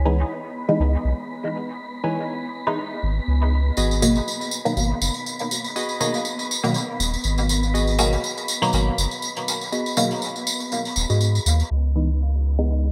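A round, deep sub bass and an airy, breathy wind-like texture open this hypnotic, nocturnal dub techno excerpt in C# minor at 121 BPM, joined almost at once by muted, nasal filtered chord stabs with phaser and dub echo and a warbling, lo-fi dusty pluck riff soaked in chorus and tape character, while a jingly vintage tambourine enters at 3.8 seconds as the harmony moves from C#m7 to G#m7, before a filter sweep on the stabs at 11.7 seconds carries the piece back to C#m7 inside a lush hall reverb and bright 1980s-style digital sheen.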